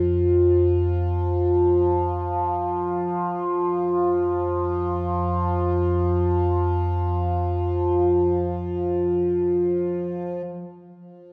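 An up-front, resonant drone of moving overtones, blending sawtooth and sine through chorus and phaser, sustains between F3 and F4 and fades out over the first 10.5 seconds, hovering above a dark, detuned, ominous bass drone rumbling on F2, in this reflective, melancholic ambient fragment in free time, tuned to A4 = 444 Hz and bathed in a wet concert-hall reverb.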